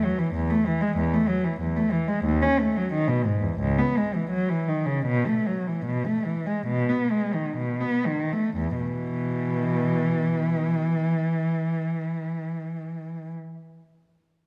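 Rubato in 4/4 at a tempo between 59 and 98 BPM and slowing from 1.0 to 8.6 seconds, this flowing, radiant passage from a baroque-style classical suite movement in E major features a lone, up-front bowed cello, rich with vibrato and expressive portamento, ranging from C#2 to C#4 over chords moving from E through C#m11 and B7 before settling on an open E at 8.6 seconds, all bathed in the lingering reverb of a recital hall.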